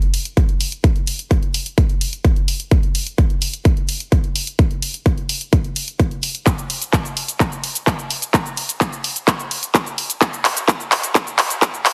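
A layered, up-front big-room dance drum kit of cabasa, handclaps and hi-hat opens this anthemic, powerful EDM build-up at 128 BPM in a straight 4/4, with a soft-clipped, high-passed snare in studio reverb; a punchy electronic kick joins at 0.4 s as a filter sweep runs throughout and a drum fill arrives at 6.5 s, all within a dense, heavily limited modern master bearing light reverb and lossy compression artefacts.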